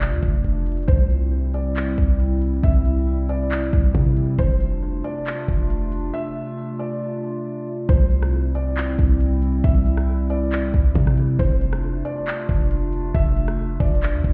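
Heard muffled, as if through a wall, and washed in stone-room reverb, this atmospheric cloud-rap hip hop excerpt floats in a dreamy half-time feel. A warbling, nostalgic lo-fi pad holds dark, chorused chords with sidechain pumping beneath a soft, felt-muted upright piano melody that carries audible action noise and a digital delay. Up front, a deep, boomy 808-style bass and an electronic trap kit of knocking kick, crisp hi-hat, handclaps and rim click anchor the groove, with a break at 6.1 s before a new section begins at 7.9 s.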